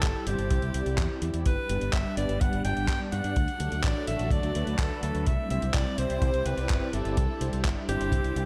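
Italo disco at 126 BPM with a sunny, danceable glow, this short excerpt sets an edgy, forceful alto saxophone melody with tape echo over swirling phased string-machine chords, a bright fingered electric bass with an envelope filter, a dark, punchy acoustic kick, gated 80s drum-machine handclaps and hi-hat, and mellow, round synth brass stabs entering at 0.3 s, all in a dreamy, reverb-soaked mix moving through C, G and D.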